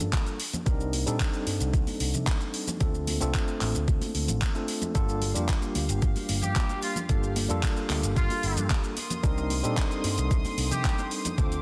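Nu-disco at 112 BPM in a straight 4/4, this groovy, sensual excerpt moves through Cm7, Dm7 and Gm7 chords before returning to Cm7. A knocking, overdriven electronic kick sits up front, joined by a layered pop drum kit with handclaps, shaker and warm, overdriven hats, while very quiet congas and an egg shaker add ringing, close hand percussion. A picked electric bass, amped and shaped by an envelope filter, runs underneath, and a clean tine electric piano played through a combo amp carries the accompaniment with medium tremolo, sidechain pumping and a slapback echo. At 5.0 seconds a dark studio string section enters with soft-attack bowed chords that float with a smooth top and pump with sidechain compression. A clear trumpet section takes the melody from 6.4 seconds, pop-styled with light vibrato and a tape echo. Light digital ambience surrounds the parts, and the master is dense and heavily limited.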